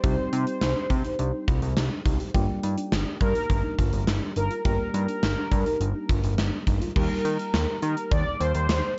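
A straight 4/4 gated 80s drum kit, with a tight kick, medium-tuned snare and bright cymbals, drives this nocturnal, melancholic synth-pop excerpt, sitting up front beside a fat, nasal analog bass. Above them a brassy synth lead with vibrato, chorus and tape echo carries the melody, while a round FM electric piano with phaser and a soft, gentle pluck playing arpeggios stay in the background. The pluck drops out at 6.9 s as the harmony moves from Cm and Gm to Eb at 7.0 s, all within a dark production with light reverb and a big gated room around the drums.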